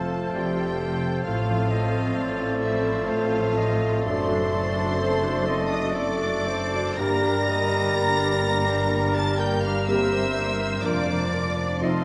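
Tender and lyrical, this classical orchestral passage in three moves with unhurried rubato, its rich violin section carrying the melody with vibrato over a gently shifting harmony. Very quiet airy flutes, a clear clarinet, a mellow cor anglais and a second violin section weave supporting lines, while bassoon and expressive violas with portamento fill the accompaniment and French horns and distant trombones hold sustained chords. A ringing concert harp spreads arpeggios above dark double basses and rich cellos, all set in the lush reverb of a scoring stage.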